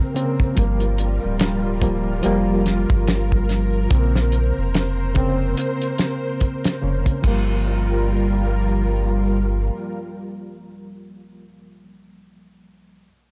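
Trip hop in G minor at 72 BPM, this dark, brooding excerpt moves in 4/4 with a 16th-note swing, cut from a longer piece. A damped 70s drum kit sits up front with a fat snare, tight kick and dark, rolled-off cymbals, playing from 0.2 to 7.4 seconds. Beneath it, a soft dub sub bass, deep and round with tube saturation, carries a filter sweep through the opening section and drops out at 9.7 seconds. A barky, reedy electric piano supplies accompaniment through overdrive, tremolo and tape echo, while a string machine voiced as cellos holds full-bodied, mellow chords with ensemble chorus and a long release. The harmony shifts between Bbmadd9 and Gm7, and the whole take has a dry, gritty character in a small room.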